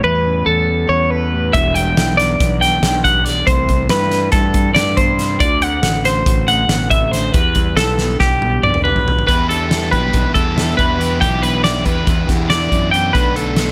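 Light reverb frames this restless, intricate slice of math rock and midwest emo, taken from a longer piece and moving in 9/8 at 279 BPM in eighths, straight and in E minor. A bright, twangy twelve-string electric guitar plays compressed, picked arpeggios up front with spring reverb, while a warm, fingered clean electric guitar sits in the background and a fuzzy, overdriven fingered bass anchors the low end. A loose indie kit with a fat snare, punchy kick and pumping room sound enters at 1.5 seconds and plays a fill from 8.0 seconds, and a double-tracked overdriven electric guitar riff arrives at 9.3 seconds as the chords move from Em9 through C6, D7 and Em7 toward Bm7.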